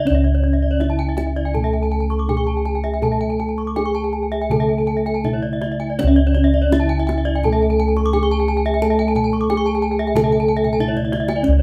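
Heard in a moderate, large studio room with the ensemble playing live together, this brilliant, shimmering Balinese gamelan excerpt moves in a straight 4/4 at 81-96 BPM in C# pelog. Bossed bronze gongs sit close and up front with a round, full bass, while a mellow metallophone melody rings with paired-tuning beats over a soft, airy metallophone accompaniment. Two higher metallophones played with horn mallets each carry arpeggios, one boxy and warm, the other bright and dry, as a tight kendang in the background closes with a drum fill from 10.6 to 11.4 seconds.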